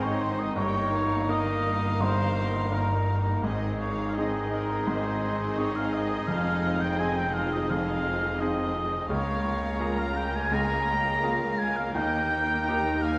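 Lyrical and passionate, this romantic passage for piano and orchestra unfolds in rubato, as a clear, present grand piano carries the melody alongside lush, expressive high violins, while an airy, hollow flute, a bright clarinet, a distant oboe and a very quiet second violin line weave second lines over smooth violas, mellow horn chords, roomy trumpet stabs and focused cellos and double basses in the background, the whole ensemble set in a moderate scoring-stage reverb.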